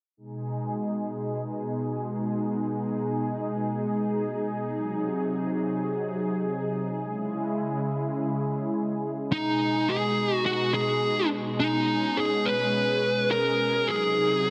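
A thick, airy pad of detuned sawtooth voices opens this driving, nostalgic synthwave excerpt at 105 BPM in G# minor, holding sustained chords through G#m, G#7 and C#m with chorus and phaser. At 9.3 s a compressed fuzz lead guitar enters up front with a picked, distorted melody trailed by tape echo, carrying it over the pad until both cut off at 14.5 s. A lush hall reverb and a dense, heavily limited modern master surround the sound.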